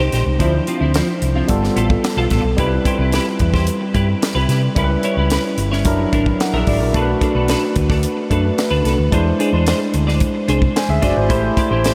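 An overdriven tine electric piano sits up front, its barky, gritty tone pushed through a combo amp and dressed in lush chorus as it lays down the chords in this breezy, upbeat slice of polished 1980s jazz-funk pop. Beside it, a clean electric guitar plays a bright, twangy picked riff, compressed and shimmering with ensemble chorus. A hollow-body short-scale bass, fingered and amped, supplies a dark, round low end, while a dry, tight funk drum kit of hi-hat, kick and snare, with a high-tuned snare, sits close in the mix with a straight feel. The harmony moves through jazzy colors, from Dm9 and G9 to Cmaj7, then C#m7b5, F#7b13, Bm7 and E7b13 before landing on Am7 near 11.3 seconds. A huge ambient reverb with a long 7.5-second tail soaks the whole mix in a dreamy haze across this short excerpt, cut from a longer piece.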